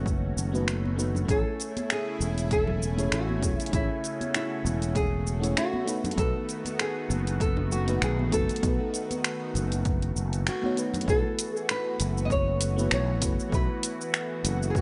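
Sunset chillout at 98 BPM with a warm, smooth mood, swung on the sixteenths and drifting over B7 and Amaj7 before settling on B7sus4 near the close of this short cut from a longer piece. A growly, punchy fretless bass sits up front beneath a round, soft FM electric piano with chorus and delay and a lush, detuned sawtooth pad that is bright, thick and phased. The kit's snaps, hi-hat and shaker and a punchy layered kick are both overdriven in a small room, ringing congas play in the background until 11.0 s, and a small, dark fingerpicked nylon-string guitar carries the delayed melody from 1.3 s, with a brief band accent at 10.5 s.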